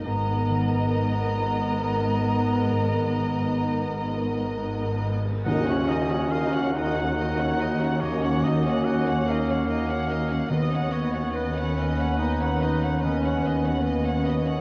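In a slow, rubato 6/8 at roughly 43-49 BPM counted in dotted quarters, this excerpt from a longer cinematic film score unfolds in Eb minor with a longing, moving character. A distant chamber violin section, muted and veiled with vibrato, carries the melody, while a very quiet, lush studio violin section, a clear clarinet in the background and a close, airy flute with a hollow tone add second lines, the flute sounding only until 5.1 seconds. Beneath them, a soft-attacked viola section, dark cello and double bass sections in the background, a ringing fingerpicked harp playing arpeggios and a mellow, roomy French horn section holding sustained chords fill out the harmony, moving from Abmadd9 to Ebm7 and then Badd9/D#. A close, dry cymbal swell and tam-tam with bright cymbals enter at 2.7 seconds and linger until 8.8 seconds. A clear oboe takes up its own line from 5.4 seconds, and at 5.5 seconds the second section arrives with a band accent as very quiet timpani on Eb3 join. 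The whole is bathed in the wet reverb of a scoring stage and carries the worn, warbling pitch drift of old cassette tape.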